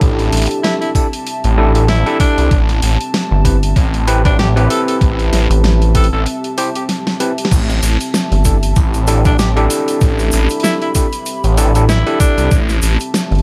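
A raspy tenor saxophone with light vibrato and scooped notes carries the melody from 0.6 seconds, its tape echo trailing over a swaggering, funky glitch hop groove at 96 BPM with a swung sixteenth feel, built on a knocking electronic kick, a dubstep kit with a huge snare and bright hats, and a swirling, phased, detuned saw bass up front. Overdriven tine electric piano stabs with 12-bit sampler grit and tape echo pump alongside a deep, moody analog pad moving between C6 and Am7, while a rubbery, bouncy square bass joins at 3.3 seconds. After a short break with a drum fill, a grainy egg shaker enters at 7.5 seconds, all set close and dry under a layer of vinyl crackle in this excerpt.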